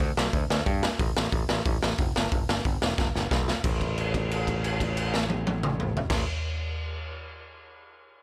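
Punk rock with a rebellious, upbeat drive, this short cut pairs an overdriven, growly picked electric bass with a raw, up-front garage drum kit whose gritty, saturated crash, hi-hat, punchy kick, snare and toms pump in a small room, with a drum fill at 3.0 seconds leading into a held note from 3.6 to 6.1 seconds, all dry and close.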